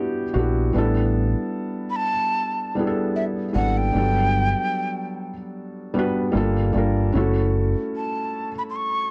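A breathy jazz flute carries the melody from 1.9 seconds, its metal tone soft in attack and unsteady with vibrato, its lifted highs softened by a low-pass filter and trailed by analog delay. This hazy, reflective lo-fi hip hop fragment, cut from a longer piece, moves at 75 BPM in 4/4 with a 57% swing on the sixteenths. A felt-muted upright piano plays accompaniment throughout, mellow and intimate with audible action noise, its vintage character shaded by cassette tape and a low-pass filter. A deep dub fingered electric bass enters at 0.4 seconds, round, dark and amped, sitting up front before dropping out at 7.7 seconds. The chords drift from Em9 through A9sus4 and Gmaj7 to Gm7 and F#m7, all wrapped in light reverb and a cassette tape sheen.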